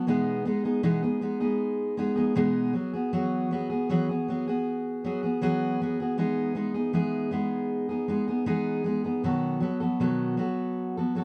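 A fingerpicked steel-string acoustic guitar carries this short pop excerpt alone from start to finish, its jumbo body giving a full-bodied, up-front tone. The mood is carefree and sunny, set at 78 BPM in 4/4 with a straight feel in E major. The guitar ranges from B2 up to A4, moving through Emaj7/B and Eadd9 before shifting at 6.2 seconds to Emaj7 and then B7. The recording has a dry, close 1970s studio character, with a moderate touch of studio reverb around the guitar. Cut from a longer piece, the clip ends at 11.2 seconds.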